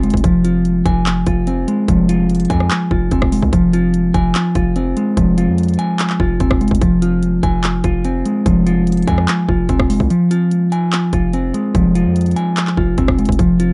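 A half-time trap groove at 146 BPM in F minor drives this dark, melancholic hip hop fragment. An overdriven electronic kit of hard-clipped kick, bright hi-hats, handclaps and rim clicks sits up front, with the kick muted from 10.1 to 10.9 seconds. Beneath it runs a punchy, heavy 808-style sine bass with a noise layer and a fast attack. A clean, fingered semi-hollow electric guitar plays shadowy arpeggios up front through a low-pass filter and digital delay, all in a rough home-demo mix with light reverb and a dulled top end.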